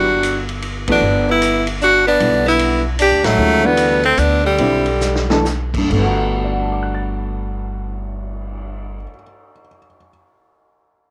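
A pair of tenor saxophones opens this searching, hypnotic modal jazz excerpt in a swinging waltz time, over grand piano and plucked upright bass, with a vintage drum kit joining almost at once. The lead tenor is edgy and forceful, placed up front with scooped notes, while the second tenor plays a lower line with a clear tone, soft attack and light vibrato. The piano has an intimate character with audible action noise, and the bass is woody and thumpy, its gut strings colored by transformer saturation. The drums sit low in the mix with dark cymbals, a punchy kick and a rolled-off top, and the band hits two shared accents early on before the pace slows and a drum fill leads toward a new section. Both saxophones drop out at 5.4 seconds, leaving the rhythm section to carry on until the piano rings alone to 10.1 seconds, all within a small room with light reverb.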